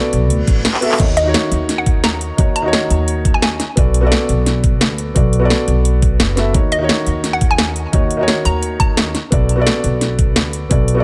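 A muted felt piano, soft and intimate with its action noise audible and trailed by dub echo, opens this melancholic, soulful stretch of liquid drum and bass. It is joined almost at once by a woody, thumpy pizzicato upright bass on gut strings and an up-front, tape-warm kit of cracking snare, metallic hats, handclaps and crash, while a knocking electronic kick arrives and a brief electronic reverse cymbal swells across a drum fill at 0.7 seconds. From 1.2 seconds a hollow, detuned square-wave pluck with chorus and dub echo carries the melody in two bouncy phrases over light reverb and chords alternating between Bm7 and Ebm7.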